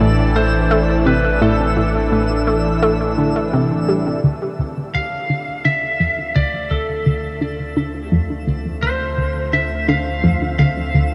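A straight 4/4 pulse carries this cosmic, hypnotic stretch of sequencer-driven space music, where a nasal, wave-folded analog pluck riff with chorus and delay pushes forward over a deep, dark analog bass, a thick, warbling unison pad holds chorused chords, a twangy, slightly broken-up lead guitar sings a delayed melody up front, and a faint granular texture sparkles high above, the mix steeped in a huge ambient reverb, until the harmony shifts at 4.2 s, when the pad, bass and texture begin fading in and a filter sweep plays over the pluck.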